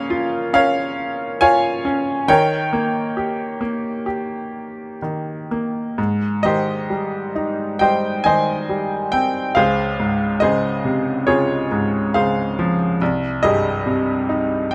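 Classical solo piano in Ab major, this tender, lyrical excerpt moves at a rubato 60-72 BPM in 4/4. A bright, slightly detuned upright piano sits up front with a woody, worn character and audible action noise, spanning C2 to Ab5 in light reverb. It opens over Bbm/Db and Eb7 before a second passage from 6.0 s settles onto Abmaj7 and Dbmaj9, closing on Abmaj7/C at 13.0 s.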